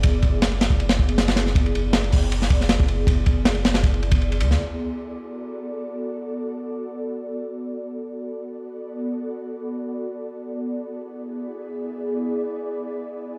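Drum and bass with a jungle edge at 158 BPM in B dorian, this frenetic, dark excerpt opens with a crunchy, saturated breakbeat kit of hi-hat, kick, ride and snare, with dark cymbals and a tight kick sitting up front over a round, mellow dub sub bass. At 4.6 seconds the drums and bass stop, leaving an ethereal, airy pad of detuned sawtooth and triangle voices with ensemble chorus and built-in reverb to sustain chords moving from Bm7 to E7/B until 13.4 seconds. The whole piece sounds as if played on a big sound system in a bare room, bathed in large studio reverb.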